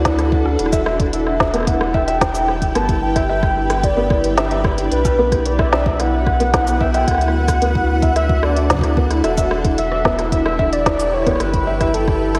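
A straight 4/4 pulse at 111 BPM drives this eerie, intricate IDM passage in E minor, built on a deep electronic kick and an organic electronic kit of woody snare, crisp hats, rim click and shaker, both re-recorded in a large room. Beneath them, a round, mellow sine sub bass holds the low end from E1 to D2. A granular cloud pad spreads blurred, detuned, evolving chords, bright and drenched in its own built-in reverb plus shimmer reverb. A felt-muted upright piano plays dark, intimate arpeggios with audible action noise, trailed by tape echo and shimmer, while a velvety, smooth synth lead of sawtooth and triangle carries the melody from A4 to A5 with vibrato, chorus, tape echo and shimmer reverb. The harmony cycles from D through Em, G and B5 and back, all set in a lush hall reverb of 1.7 seconds that leaves the dreamy mix soaked in digital ambience, with the tuning at A4 = 436 Hz.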